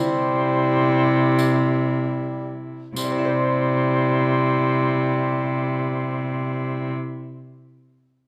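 Classical renaissance-style consort dance in C major, stately and courtly in free time and slowing over its first 3.0 seconds, with a dark, up-front bowed cello bass beneath a warm gut-string viola second line, a clear bassoon, a softly attacked vibrato oboe melody set in the background, fingerpicked delicate double-strung lute ringing on to 7.6 seconds, and a jingly tambourine from 1.4 to 3.3 seconds, all heard in a moderate recital hall reverb as a short cut from a longer piece.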